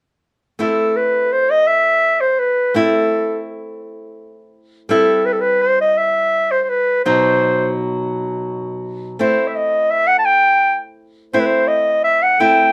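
Festive yet soulful, this short klezmer excerpt moves at 84 BPM in a straight 3/4, set in A dorian with a raised fourth and tuned a touch sharp at A4 = 441 Hz. A warm, present clarinet carries the melody up front from 0.6 to 12.7 seconds, playing solo in a classical style between A4 and A5. Beneath it, a nylon-string guitar supplies fingerpicked accompaniment over the same span, its bright, small sound suggesting fresh strings as it sits well behind the lead in the lower register. The harmony moves from Am to C, then B, before returning to Am at 9.2 seconds. A moderate small-room reverb gives the pair an intimate, close setting, and the passage is cut from a longer piece.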